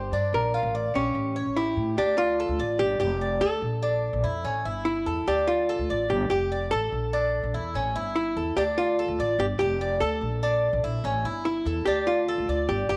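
Cuban son in the guajira style, this danceable, nostalgic 13-second excerpt moves at 146 BPM in a straight 4/4 and sits in D minor. A hollow-body electric archtop guitar, miked and amplified, carries the melody up front with a clean, compressed, picked tone that stays dark. Beside it, the acoustic Cuban tres plays picked arpeggios on its double strings, some doubled at the octave, giving a bright, metallic shimmer that is also up front. Underneath, a pizzicato upright bass on gut strings supplies a woody, thumpy low end. After a brief opening phrase, the main section begins at 2.0 seconds and cycles through a repeating progression of Dm, G5, Bbmaj7 and A7. A moderate echo chamber reverb with studio ambience adds space around the trio.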